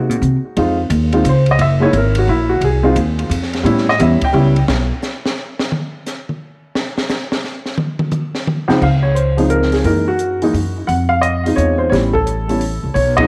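Swinging and warm, this short jazz piano trio passage moves in a lilting three-beat waltz feel with a relaxed swing. A dark, mellow baby grand piano carries the melody up front, its intimate, natural tone marked by audible action noise, short sustain and a touch of tape echo, over changes such as Dbmaj7, Gb9, Fm7 and A9. Beneath it, a woody, thumpy pizzicato upright bass with gut strings sits close in the mix, its sound given extra grit by transformer saturation. Piano and bass drop out at around 4.6 and 4.9 seconds, handing the spotlight to a compact cocktail drum kit for a smooth, shadowy solo of crash, ride, hi-hat, toms, a high-tuned snare and a punchy kick. The trio regroups at about 8.8 seconds for a closely related progression, with Gb13 in place of Gb9. Light reverb and small room ambience wrap the acoustic performance in a cozy, club-like space.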